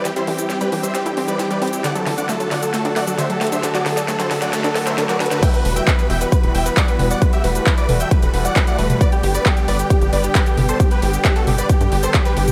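Soaring and euphoric, this uplifting trance cut from a longer piece runs at 134 BPM in E minor, opening with a build-up where a huge, detuned supersaw lead and a thick, warbling unison pad with chorus ride sidechain pumping. Alongside them, a punchy unison pluck arpeggio with dub echo is filter-swept, while a very quiet riser and noise sweep climb over a drum fill from an overdriven dance kit with a huge snare and metallic hats, and a tight, nasal sequencer bass drives underneath. At 5.4 s the drop lands as a punchy, overdriven electronic kick takes the front and a second bright pluck line with phaser sits in the background, all under light reverb.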